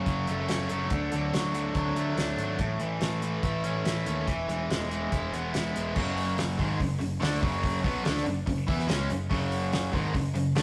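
Two brilliant, overdriven electric guitars, one biting and up front and the other crunchy, open this driving, gritty classic rock passage cut from a longer piece with a picked riff over an F#m, D, A, E progression, joined at 0.1 seconds by a warm picked electric bass and an up-front, damped 70s drum kit with a fat snare, tight kick and dark crash and hi-hat, all captured as a rough rehearsal-room recording with tube saturation and a wet stone room reverb, before the progression returns to F#m at 6.0 seconds.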